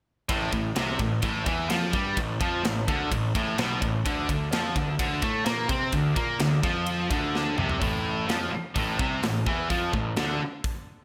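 Relentless and aggressive, this heavy metal excerpt drives ahead at 128 BPM in a straight 4/4, centered on A minor and cut from a longer piece. Two bright, high-gain distorted guitars play the riff together from 0.3 seconds, one of them scooped and pushed up front, moving from A minor to D5 before returning to A minor. A fuzz-laden, overdriven electric bass plays beneath them with a growly, direct-and-amped bite. The tight metal drum kit sounds polished and airy, with bright cymbals, a medium-tuned snare, a tight kick and gated reverb, and it marks the change of section with a drum fill at 7.3 seconds. The production has a bright 1980s-style digital sheen with light, small-room reverb, and the drums ring on briefly after the other parts stop at 10.4 seconds.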